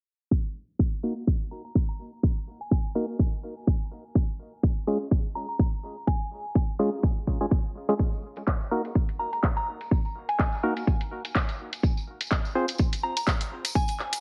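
Heavily compressed and muffled like a radio broadcast under light digital reverb, this swaggering, bouncy bass house excerpt at 125 BPM in Eb dorian swings on a punchy, up-front electronic kick from 0.3 seconds, with hollow, organ-like stabs pumping against it through a filter sweep and tape echo, a soft, pure FM bell melody floating high above with chorus and phaser, and a jingly tambourine and a house kit of handclaps and bright hi-hats joining at 8.0 and 8.4 seconds over chords moving from Ebm through Db to Fm.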